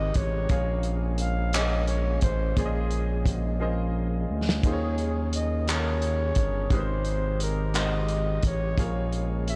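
Soaked in a moderate cathedral reverb, this dreamy, late-night slice of slow R&B drifts at 58 BPM in a straight 6/8, set in Bb dorian and cut from a longer piece. A breathy flugelhorn with a smooth top carries the jazz-styled solo melody. Beneath it, a clear, slightly worn grand piano supplies the accompaniment, and a fat, clean tonewheel organ holds sustained chords in the background through a slow rotary speaker. Up front, a sawtooth-and-triangle synth bass with a wave-folded edge glides between notes with portamento and vibrato. The acoustic soul kit enters at 0.1 seconds with a tight kick, medium-tuned snare, hi-hat and handclaps, a rolled-off top and vintage 12-bit sampler grit, and plays a fill from 3.6 to 4.6 seconds. The harmony moves from Abmaj9 to Bbm9, then to Eb7sus4, and back through Abmaj9 to Bbm7, giving the passage a yearning glow.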